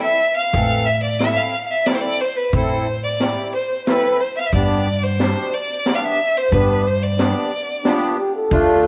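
A bittersweet, soulful klezmer piece in 3/4 at 90 BPM opens with an intense, bowed violin singing the melody up front with vibrato, over a reedy, sweet accordion with light tremolo tuning, as the harmony moves from A minor to G at 4.5 seconds. Woody pizzicato upright bass and a street-band drum kit with a high-tuned snare, boomy kick and rolled-off top join at 0.5 seconds. Near the close of this brief cut from a longer piece, at 7.9 seconds, a dark, veiled, smooth-topped trombone with a bucket mute steps forward with a second line, all set in light reverb and small-room ambience.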